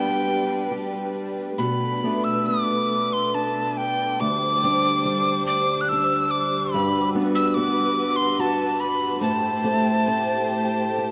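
A wet cathedral reverb with a 6.1-second decay surrounds this mournful, haunting Celtic slow air, cut from a longer piece and played in a rubato 3/4 at around 64-74 BPM, tuned to A4 = 438 Hz. Up front, a breathy, unsteady metal tin whistle carries the melody with tongued chiff and vibrato, while a boxy, parlour-style steel-string acoustic guitar picks the accompaniment. Behind them, an intimate studio string section bows soft-attack sul tasto chords, moving through G, Bm7, D7sus4, Gmaj7 and Am7 across the 11.1 seconds.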